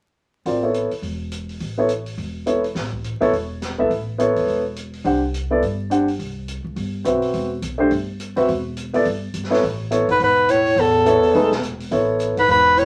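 A clear, close-miked soprano saxophone with vibrato and scooped notes takes the solo melody from 10.1 s, joined by a bass clarinet playing a present, subtoned second line, in this searching, hypnotic modal jazz passage cut from a longer piece at 210 BPM with a 60% swing. Before that, a polished, up-front grand piano accompanies over Aadd9 and Cmaj9, alongside woody pizzicato upright bass and an open, natural drum kit with a high-tuned snare and boomy kick, shifting to Amaj9 at 9.6 s. A wet studio reverb and a layer of vinyl crackle surround the sound.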